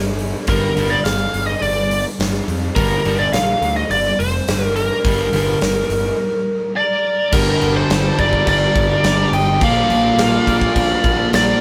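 Hard rock excerpt, heavy and driving, where a fuzzy, punchy picked bass and a huge, up-front arena drum kit with bright cymbals and a punchy kick power a biting overdriven lead guitar melody over two overdriven rhythm guitars, one a warm semi-hollow, before a dark octave-fuzz lead enters at 6.8 seconds and a very quiet, shouting tonewheel organ with key click and slow rotary speaker adds sustained chords from 7.3 seconds, all in a moderate stone room.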